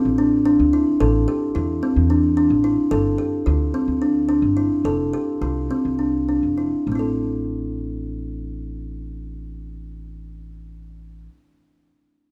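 Set in a straight, uneven 7/8 that slows down between 2.9 and 6.9 seconds, this pensive, hypnotic contemporary chamber piece, cut from a longer work, pairs an up-front kalimba playing soft, ringing arpeggios with a hollow, woody fingertip pluck against a growly pizzicato upright bass on steel strings, captured in a close, detailed and nearly dry recording.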